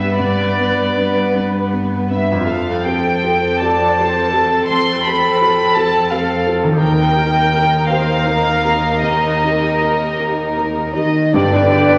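Cinematic, emotional film score in a rubato 6/8, hopeful and tender, where a floating, sul tasto violin section carries the melody up front over a second violin line, dark woody violas, a felt-muted upright piano with audible action noise, ringing fingerpicked harp arpeggios and an intimate cello bass in a wet scoring-stage reverb, before mellow French horns add sustained chords at 10.9 s and a distant clarinet, cor anglais, pure silver flute and very quiet double basses join at 11.3 s in this cut from a longer piece.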